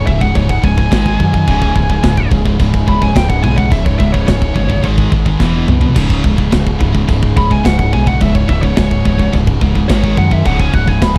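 Heavy metal with an epic, dark mood, where a dark, high-gain lead guitar plays a solo melody over three distorted rhythm guitars (one bright and double-tracked, one sludgy and overdriven, one heavy) grinding out riffs in the background, a round, woody fretless bass, a very quiet, reedy chamber string section holding sustained chords, and an up-front acoustic drum kit with a big-room sound, bright cymbals and a tight kick that plays a fill around 5.4 seconds, all in a dark, warm studio production with studio reverb.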